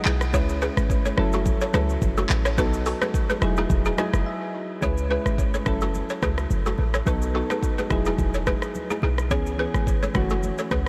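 Swung sixteenths at 107 BPM in 4/4 drive this mellow, sultry afrobeats excerpt in C# minor. An up-front afro-pop drum kit with deep kick, dark hats, handclaps, rim click, shaker and vintage 12-bit sampler grit sits over a punchy, tight 808-style bass, while round electric-piano-like synth keys with chorus and a filter sweep move through C#m7, F#m7, B7 and Emaj9 and add fills at the start and from 3.7 seconds ahead of a brief break at 4.3 seconds. A woody, buzzing balafon plays a riff steeped in diffuse ambient delay, and high-tuned congas sit in the background of a light digital ambience.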